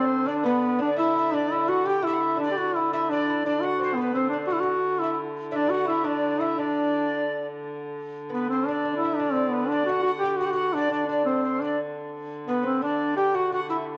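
Medieval dance in a straight 6/8, festive and rustic, that gradually speeds up over this short fragment from a longer piece, with a new section arriving at 7.6 s. An up-front duduk carries the folk-style melody with mellow vibrato and scooped notes, while a breathy, distant alto recorder adds a tongued, slightly unsteady second line with audible chiff, and a delicate fingerpicked lute on double nylon strings sits in the background. Beneath them a dark, smooth wheel-bowed hurdy-gurdy holds a low drone, and a wet spring reverb gives the recording a lingering, resonant space.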